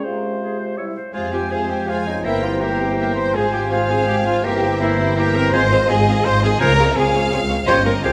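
Up front, a rich, bowed double bass section anchors this stormy, dramatic classical passage in a rubato triple metre, as a lush violin section carries the vibrato melody from 1.5 seconds over a second violin section, a viola section and a portamento cello section, while a clear clarinet, an oboe and a mellow bassoon sit back from the start beside a tight French horn section holding sustained chords, a hollow close-miked flute joins in the background at 0.1 seconds, a distant, bright trumpet adds stabs from 1.1 seconds, and a wet recital hall reverb surrounds this fragment cut from a longer piece.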